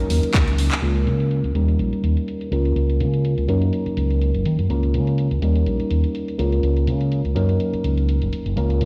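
This feel-good, joyful clip of filtered disco house, cut from a longer piece, rides a swung 4/4 groove. All three parts carry overdrive. The reedy, barky electric piano sounds gritty through a combo amp, sitting up front with a phaser, sidechain pumping and a low-pass filter as it moves through Gb6, Db6 and Eb7 chords. Beneath it, a dark, round fingered bass is amped and up front, pumping and filtered in the same way. The layered, electronic house kit brings handclaps and bright hats, with a short drum fill from 0.3 to 0.8 seconds before a filter sweep carries the rest of the clip. The mix sounds as if played on a big sound system in a bare stone room, with light reverb and a small room ambience on the drums.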